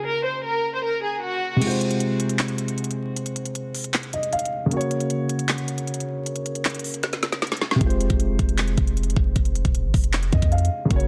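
Dark, eerie half-time trap hip hop fragment in which a floating, soft-bowed violin section with tape echo and a boxy, mellow grand piano open together under a low-pass filter, the violins dropping out at 1.6 s as a crisp-hatted, woody-snared drum kit arrives with its knocking kick held back until a fill carries it in at 7.8 s, when a deep, boomy sine 808 bass joins beneath vinyl crackle and a dense, heavily limited master.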